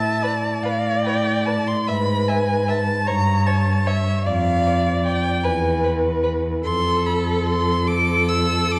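Classical string quartet music in a slow, romantic 6/8 movement with a rubato feel, this brief passage cut from a longer piece sounds yearning and solemn, and its harmony drifts from A7sus4 through a Gdim7 to a closing F6. A close, soft-attacked second violin sits up front above a rich, smooth and even cello bass, while a warm viola fills the middle. The melody violin, entering at 0.2 s, sounds distant in the background, and the upper strings sing with vibrato and portamento inside a dark production with a moderate recital-hall reverb.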